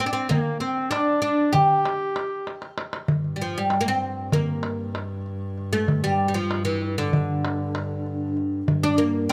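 The plectrum-plucked fretless oud leads this longing, soulful excerpt of a Turkish makam ensemble piece in G makam huseyni, its woody, deep double strings carrying the melody up front from D3 to G4 at 194 BPM in a straight 9/8. A bright, classical-style clarinet adds a second line until 2.8 seconds, while a small clay-shell darbuka played with soft hands keeps a vintage, band-limited pulse from 0.3 seconds and caps the opening with a drum fill just before 3.1 seconds. From there a single bowed double bass holds a biting, intense G2 drone with vibrato beneath the oud and darbuka, all captured by close, detailed microphones with light reverb.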